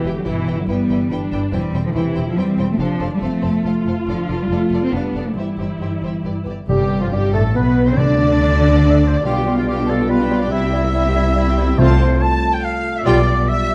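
A dark, warm recital-hall sound frames this spirited, graceful classical-period excerpt in quick triple time, where a distant violin section carries the melody over a second violin line, a lush background viola section with portamento, focused cellos and a clear, up-front double bass section, all bowed with vibrato, while a dark French horn section sustains chords behind them. At 6.7 seconds the woodwinds join: an airy flute group and a smooth oboe on second lines, a very quiet, roomy clarinet, and a dark bassoon in the accompaniment. Close, articulate timpani struck with hard mallets punctuate the texture in short bursts.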